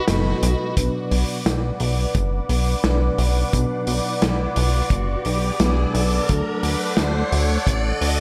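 Lightly reverberant and moody, this nostalgic synthwave fragment cut from a longer piece opens on a short band accent before settling over chords moving from B minor to D. A smooth, detuned sawtooth pad with chorus and sidechain pumping holds sustained chords, while a soft, round FM electric piano sits in the background with tremolo, digital delay and vintage 12-bit sampler grit on its stabs. Up front, a glossy, nasal chorused synth bass anchors the low end beneath a dark, small-room acoustic kit of hi-hat, medium-tuned snare with gated reverb and a tight kick, as an electronic riser enters at 2.4 s.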